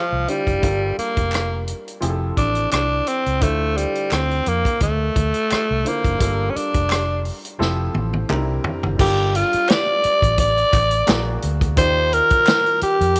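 A raspy, gritty alto saxophone carries the melody up front, its pop-style vibrato giving this lush 1970s-style soul cut a silky, bittersweet mood over a loosely swung 4/4 feel. Beneath it, a clear baby grand piano with short sustain supplies the accompaniment, while a dark, round, foam-muted electric bass plays with a punchy, amped tone. A vintage acoustic drum kit sits close in a small room, with a medium-tuned snare, a punchy kick, hi-hat, rim clicks, toms and crash cymbal, and it plays a fill at 7.6 seconds that leads into the next section. Very quiet group handclaps add a crisp human accent, and a mellow, airy vibraphone played with soft mallets rings with a slow motor vibrato, appearing briefly at 3.4 seconds and again from 9.7 seconds. The harmony moves through smooth seventh chords before shifting to a richer Gm9, Bbaug7 and Ebmaj9 in the closing section, all softened by a light reverb in this fragment cut from a longer piece.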